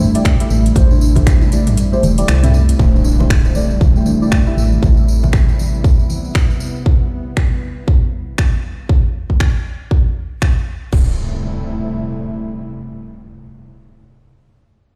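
Driving and warm, this afro house excerpt moves at 118 BPM in A minor with a swung sixteenth-note feel, resting on an Am7 chord. An up-front, punchy electronic kick pushes through a house drum kit of metallic hi-hats, finger snaps, toms and crash cymbal, both tape-warmed and re-recorded in a small room, while thick-skinned congas with hard hands sit in the background and a jingly, bright tambourine adds sparkle. Underneath, a woody, round FM bass and a smooth, detuned sawtooth pad pump against the kick, the pad holding sustained chords with chorus until 13.9 s. A buzzing, hollow kalimba plays soft arpeggios through a low-pass filter and dub echo, joined by a deep, wave-folded chord stab treated with chorus, phaser and dub echo. The kick drops out from 1.8 s, then an electronic impact lands at 2.8 s as a filter sweeps across the kalimba, and a second impact arrives at 10.9 s as the drums stop, all set in a large studio reverb as though played on a big sound system in a bare room.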